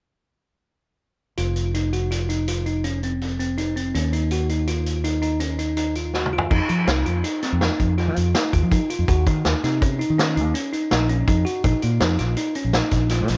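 Worn, warbling cassette tape with light reverb colours this brooding, tense progressive instrumental excerpt in 7/4, where a bright, bell-like tine electric piano plays delayed arpeggios over an up-front fingered electric bass and a gritty, saturated vintage drum kit with dark cymbals and a punchy kick, all three playing from 1.4 s and a drum fill at 6.1 s leading into the second section.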